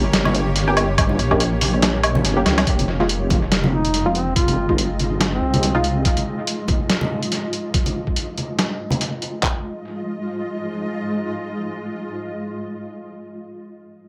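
A swung, half-time deep dubstep groove with a heavy, brooding mood rides on gritty, pitched-down sampler-style trip hop drums (hi-hat, snare, woodblock, handclaps and a thumpy kick), with distant low-tuned congas, a dark wobbling bass up front until 6.0 s, muted filtered dub chord stabs, a brief mellow duduk melody from 3.7 s, and a cloudy granular pad that lingers alone until 13.6 s, all in an echo-heavy mix.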